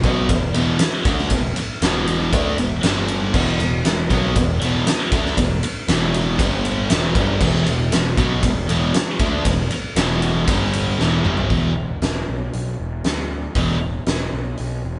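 A huge arena drum kit, fuzz-laden picked bass and an overdriven semi-hollow guitar all kick in together at the start of this aggressive, driving hard rock excerpt in E minor, moving at 118 BPM in a straight 4/4. A scooped, high-gain guitar with bright distortion joins a fraction later and shares the riff with the semi-hollow guitar, which sits farther back in the mix with a warm, hollow-body tone. The drums are up front, with a fat snare, punchy kick, crash, ride, hi-hat and toms ringing in a natural big-room sound, while the bass adds a punchy, overdriven growl underneath. The riff cycles between E5 and G5 power chords with passing E minor chords, and a drum fill at 11.0 seconds pushes into a new section at 11.5 seconds that lands back on E5. The band sounds like it is playing live together in a stone room with moderate reverb and a slightly dark top end, and the guitars drop out at 13.8 seconds while the bass carries on to the cut at 15.0 seconds.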